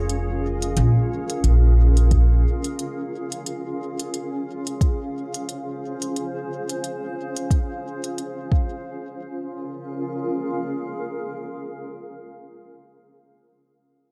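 A hazy, meditative ambient dub fragment with light studio reverb, where a cloudy, granular pad holds blurred Bbm7 chords to 12.3 s, a woody, pizzicato upright bass thumps briefly at the start, crisp electronic hi-hats tick from 0.1 s, and a soft electronic kick sits up front from 2.1 s before a brief Db chord gives way to Bbm7 again.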